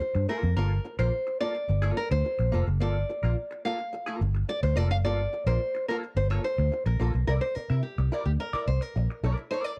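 A straight 4/4 funk groove at 107 BPM in G dorian sets a sly, hypnotic mood in this short cut from a longer piece, with a dark, foam-muted electric bass sitting round and punchy up front, thickened by transformer saturation. Over it, a fingerpicked nylon-string guitar carries the melody with a classical touch and audible finger squeak, taking a solo from 0.0 to 7.3 seconds over Gm9 before the harmony shifts to C9. A clean, compressed hollow-body jazz guitar with wah fills in the accompaniment, all captured as a dry, close 1970s-style studio recording with small room ambience.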